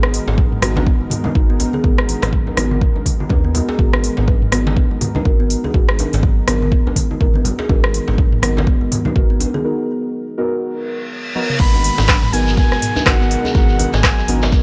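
A reverb-soaked mix puts a deep, tape-warm electronic kick and an afro-pop drum kit with metallic hats up front in this driving, hypnotic afro house excerpt, while a round, dark square-and-sine analog bass, a detuned, chorused pad with vintage 12-bit grit, and soft, deep chord stabs under a filter sweep all pump with sidechain. Woody, thumb-plucked kalimba arpeggios ride a digital delay as djembe and soft-handed congas sit in the background, the congas stopping at 9.6 s for the break and a reverse cymbal and downlifter entering at 10.8 s. At 11.6 s the drop brings a breathy, bright, close-miked concert flute melody with vibrato, joined by a grainy, distant shekere.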